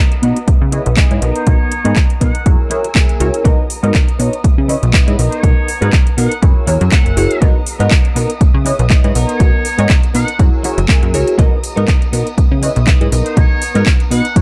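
Filtered disco house in B major at 121 BPM with a swung 16th-note feel, this joyful, funky clip from a longer piece rides a filter sweep across its full 14.4 seconds, cycling through C#m9, Bmaj7 and F#9 chords. A punchy, up-front electronic kick, an overdriven house kit with metallic hats and handclaps, and a very quiet, close tambourine sit alongside a plucky sawtooth bass, while a bright, twangy twelve-string electric guitar riff and a mellow, chorused polysynth comp pump under sidechain compression. Lush bowed violins with 12-bit sampler grit hold sustained chords in the background, and from 1.4 seconds a distant, buzzy muted trumpet section carries the melody in a dark production.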